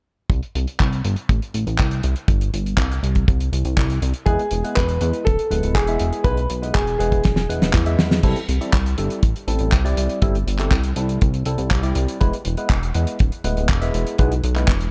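Italo disco at 121 BPM in 4/4, this excerpt from a longer piece has a romantic, danceable mood and a straight feel in C major. A dry, tight kick sits up front from 0.3 seconds beside a glossy, retro synth bass with a filter pluck and chorus, while a damped 70s kit adds a fat snare, handclaps, hi-hat and crash cymbal, with a filtered sweep on the drums through the opening section and a fill leading into the second section at 8.2 seconds. From 4.3 seconds, a smooth, vintage grand piano with short sustain carries a brief delayed melody, and a barky, gritty tine electric piano, overdriven through a combo amp, adds bright stabs colored by phaser and delay. The harmony moves between C5, E and C6 chords. The production is dark and warm, with light reverb and small room ambience.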